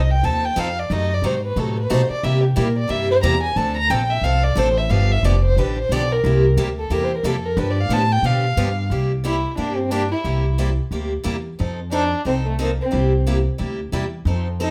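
A dark, intimate violin played sul tasto with light vibrato and plate reverb carries the melody, soloing through the first 8.9 seconds, over a woody, growly pizzicato upright bass up front and a bright, boxy picked steel-string parlour guitar that enters at 0.2 seconds, in a lively, swinging acoustic jazz manouche excerpt at 180 BPM in C mixolydian with a rough home-demo sound in a reverberant studio room.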